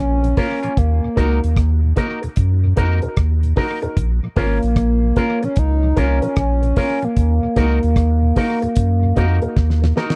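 A reedy, woody FM lead carries the melody up front, its soft-attack tones thickened by chorus, tremolo and dub echo, over a deep, round sub bass in this meditative, laid-back roots reggae excerpt at 75 BPM with a swung 16th-note feel. A damped 70s drum kit with a fat snare and tight kick sits forward, joined by dark, intimate baby grand piano stabs with audible action noise, a twangy envelope-filtered electric guitar with dub echo, and a soft, flute-like tonewheel organ through slow rotary speaker and tape echo in the background. The harmony moves between Bbm and Ebm in a dry, close 1970s-style studio sound, and a drum fill arrives at 9.6 seconds.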